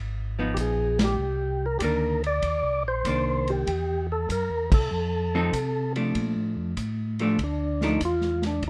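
A loping swing at 97 BPM in 4/4, with eighth notes pushed to a 69% shuffle, carries this short, bluesy soul jazz organ trio fragment from a longer piece. A mellow, round tonewheel organ holds down the bass from the first moment, its dark, clean tone colored by chorus vibrato and a slow rotary speaker. Just after, a vintage hollow-body electric guitar comps with a picked, shadowy sound, while a second tonewheel organ carries the melody with a soft, flute-like voice marked by third-harmonic percussion, key click and its own slow rotary spin. A vintage acoustic drum kit with dusky cymbals, a medium-tuned snare and a punchy kick sits up front beside the other parts, its rolled-off top lending a smooth feel in a studio room touched by light reverb. The band hits accents together, the chords move from a rootless C#9 through Cm9, C6 and F7, and at 6.2 seconds a tonewheel organ solo begins over Bbmaj7 as a new section starts.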